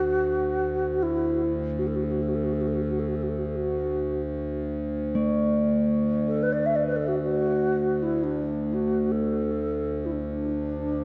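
This is world meditative music in free time, a calm and peaceful passage cut from a longer piece, set in D major pentatonic with tuning at A4 = 444 Hz. A hollow wooden-headed alto flute carries the melody from the start, sitting up front with an airy tone, vibrato, a crisp attack and rolled-off highs, and its line is trailed by analog delay. Beneath it, a pedal harmonium holds a steady low D drone throughout, its reedy, breathing sound also placed close to the listener. At 5.2 s a bronze singing bowl joins on A3, struck with a wooden striker, giving off a dark, metallic ring with slow beating that lingers to the end at 11.0 s. Moderate spring reverb and an echo-heavy mix surround the parts, and the cassette tape recording lends the whole a soft, unhurried character.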